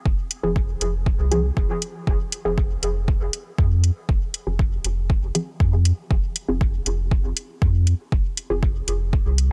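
A steady, straight 4/4 pulse at 119 BPM drives this deep, nocturnal dub techno piece in F minor, cut from a longer work, with an overdriven, layered electronic kick and metallic analog hi-hats sitting up front over a round sine sub bass that carries tube saturation and sidechain pumping. Muted, detuned sawtooth chord stabs with a quick filter pluck and short decay hover on an F minor chord, coloured by phaser, dub echo and their own sidechain pumping, while a filter sweep moves across them throughout. The mix sits in a digital ambience, with the mellow stabs placed further back than the warm low end and drums.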